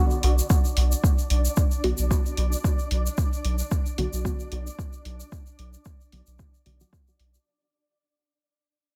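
Dub techno at 112 BPM in B minor, hypnotic and deep, this short cut from a longer piece rests on a single Bm chord, with a muted, dark chord stab carrying chorus, phaser, sidechain pumping and dub echo under a filter sweep, while a flickering, granular texture with slow attack and long release drifts above through its own reverb. A round, soft sub bass and an overdriven, up-front kick anchor the low end, joined by an overdriven electronic hi-hat and a bright, close tube shaker, all with a 55% swing on the 16ths. The whole piece fades out across its 7.5 seconds in a dry, near-reverbless mix.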